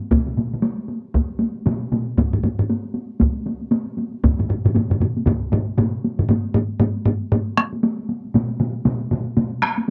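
A swung sixteenth-note feel at 117 BPM in 4/4 drives this powerful, ceremonial Japanese traditional taiko excerpt, where three heavy-stick taiko ensembles sit up front in a dry, close 1970s-style studio sound with moderate booth ambience, one of them dropping out at 5.4 seconds, while a compressed, saturated solo taiko line cuts through from 2.2 to 7.7 seconds as the music shifts into a new section at 6.3 seconds.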